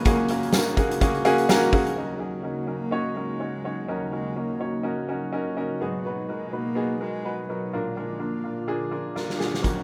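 A huge, punchy arena drum kit sits up front in this driving, dramatic piano-driven pop excerpt in Eb minor. Its fat snare, kick and hi-hat play at 125 BPM with a light swing on the 16ths, then drop out at 2.0 seconds and return at 9.2 seconds with a fill. A clear, woody upright piano carries the accompaniment across a broad range, close enough that its action noise is audible, while a jingly tambourine sits in the background early on. A cello with light vibrato and a soft, airy bow plays the melody in a nasal, intimate voice. Beneath them, a breathy, mellow pad with chorus, detuned tones and a noise layer holds sustained chords through Gbadd9, Ebm7, Abm7 and Bb. The rough home demo mix sits in a small room with moderate reverb.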